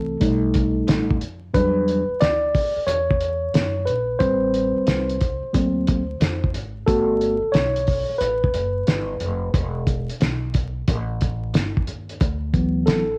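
A mellow tine electric piano sits up front and takes the lead from 0.0 seconds, its clean, direct tone carrying a solo through this short cut from a longer jazz-hop piece, with a break arriving at 9.5 seconds. Underneath, a cloth-damped drum kit with a fat snare and tight kick thuds along in a swung hip hop groove. The kit has a muffled, rolled-off top and a saturated, gritty edge from vintage 12-bit sampler grit and cassette tape. A pizzicato upright bass adds a woody, growly, thumpy low end beneath the keys. The harmony drifts through lush jazz chords such as Em7, Am9 and Gmaj9 before settling on D6 at 12.2 seconds. Light reverb, vinyl crackle and the feel of a home cassette recording give the whole a warm, relaxed mood.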